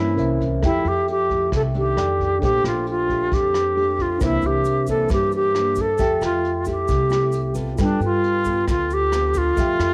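A straight 4/4 bossa nova groove at 134 BPM sets a breezy, relaxed mood in F major. The vintage brush drum kit enters at 0.2 seconds with hi-hat, a tight kick and rim clicks, its small, pumping room sound rolled off at the top. A tube shaker joins at 4.2 seconds, grainy and saturated but tucked in the background. Underneath, a woody, thumpy pizzicato upright bass anchors the low end. Up front, a close-miked concert flute carries the melody with an airy, hollow tone, crisp attacks and vibrato. It sits over a fingerpicked classical nylon-string guitar and a clean tine electric piano heard through its built-in speakers, both moving through lush chords such as Fmaj9, Bbmaj13 and C9. The flute, guitar, electric piano and drums carry a cassette-tape coloring, and a light studio reverb gives this short excerpt, taken from a longer piece, a homespun feel.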